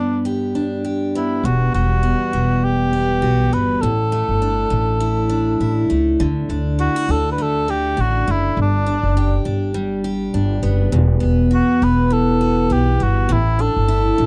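A mellow cor anglais with light vibrato carries the classical-style solo melody over full-bodied picked steel-string acoustic guitar in this easy-going, carefree acoustic pop excerpt at 101 BPM in D major, with a lightly swung 16th feel, a woody, dark pizzicato upright bass joining at 1.4 seconds, and all three parts sitting up front in a dry, close 1970s-style studio sound.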